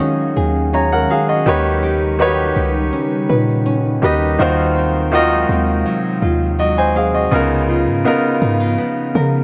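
A natural, up-front baby grand piano opens this longing, sensual contemporary R&B passage, joined from the start by fingerpicked nylon-string guitar arpeggios with audible finger squeak and tape echo, and by a glassy, ethereal FM pad that holds slow-attack chords in the background through ensemble chorus, phaser and its own reverb. At 0.4 seconds a deep, boomy 808-style bass with a fast-attack, decaying sine tone settles underneath. Extended chords such as Ebm11 and Db13 pass through a small room with light reverb in this section cut from a longer piece.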